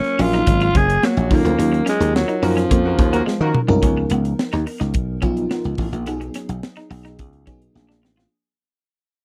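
A raspy, growling alto saxophone with slapback echo leads from the start of this polished, urban and bittersweet 1980s jazz-funk pop excerpt at 107 BPM, joined briefly by a mellow horn section from 2.4 s before both drop out at 3.6 s. A dreamy FM electric piano with a soft pad layer, lush chorus and tremolo carries the harmony through chords like Gbmaj7, Ebm9 and Db13. Bright, foam-muted thumbed slap bass, a crisp fusion kit with a high-tuned snare and punchy kick, and a twangy, slightly broken-up guitar riff sit in a dry, close studio sound, with band accents, drum fills and a fade-out from 3.8 s.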